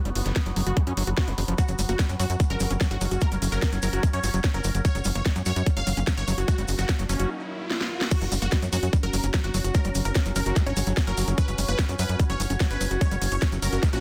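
A dense, heavily limited and dry mix opens this psychedelic trance excerpt in F# major at 147 BPM, where a tight, punchy sequencer bass and an up-front electronic kick drive a hypnotic pulse beneath a cracking snare, bright hats and crash of a small-room drum and bass kit, with a grainy vintage cabasa arriving at 1.6 s. A resonant, overtone-sweeping drone with sidechain pumping and a warbly, lo-fi tape-like pad sit in the background, while a screaming, squelchy acid line with distortion, chorus and delay churns behind a detuned supersaw stab treated with phaser and delay. A background riser and drum fill lead into the drop at 8.1 s, where a very quiet, metallic FM wobble bass briefly surfaces at 10.4 s.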